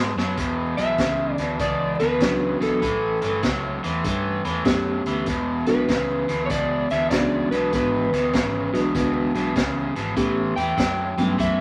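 This excerpt of a soulful, swaggering electric blues shuffle opens with a short drum fill as a crunchy, bright overdriven guitar riff and a round, foam-muted fingered bass get underway, swinging along at 98 BPM in 4/4 in E mixolydian. The big-band drum kit has a natural studio-room sound, with hi-hat, a medium-tuned snare and a punchy kick. At 0.8 seconds a dark, slightly broken-up slide guitar played with fingerpicks enters to carry the melody up high. A reedy, clean electric piano comes in at 2.2 seconds with a fast tremolo, heard through its built-in speakers as accompaniment. The harmony moves from Esus2 to A9 and E9, then back to A9, and the whole track has a club reverb and a layer of vinyl crackle.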